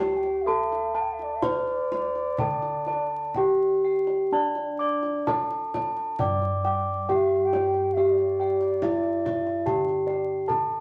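A ringing bronze metallophone with a wooden mallet sits up front in this serene, shimmering Javanese gamelan excerpt, carrying the melody while an airy bamboo bansuri with rolled-off highs traces a second line, round beating bossed gongs and a dark, smooth horn-mallet metallophone weave arpeggios, padded gongs hold a soft bass, and a tight, saturated kendang struck with hard hands adds percussion in a moderate studio reverb flecked with vinyl crackle.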